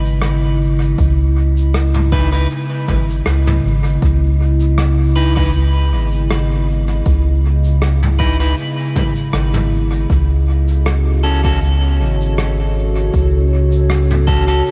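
A warbling, nostalgic pad with chorus and its own reverb sustains dark chords over a deep, round sub bass from the start, while a muffled vintage brush kit taps out cabasa, rim clicks and toms through dub echo, all in a deep, spacious ambient dub groove at 79 BPM in C# minor with a gentle swing. An overdriven, punchy electronic kick joins in the background at 1.0 seconds, and at 2.1 seconds a bright, twangy electric guitar on the edge of break-up adds echoing stabs. The harmony rests on C#m7 before moving to F#m at 10.1 seconds, with vinyl crackle and light reverb lending a lo-fi haze to this fragment of a longer piece.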